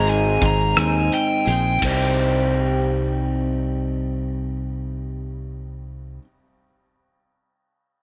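A bright, 1980s-style digital production bathes this short excerpt of folk rock and heartland rock in a moderate, lush hall reverb, giving its wistful, dusty mood a spacious glow. Moving slowly at 57 BPM in a straight 6/8 in C minor, it opens on an Ab chord with a dark, smooth, overdriven lead guitar playing an up-front solo between G5 and Bb5 until 1.8 seconds. Underneath, a picked old ladder-braced acoustic guitar with woody, boxy old strings plays through the whole passage, joined by a slightly broken-up, lo-fi electric guitar riff through a small old amp. A fingered electric bass sits up front with a growly, punchy tone, while a loose indie drum kit with a tight kick, dark cymbals, hi-hat, ride and rim clicks plays only until 2.0 seconds. From 1.8 seconds the harmony settles on C minor as the guitars and bass carry on together.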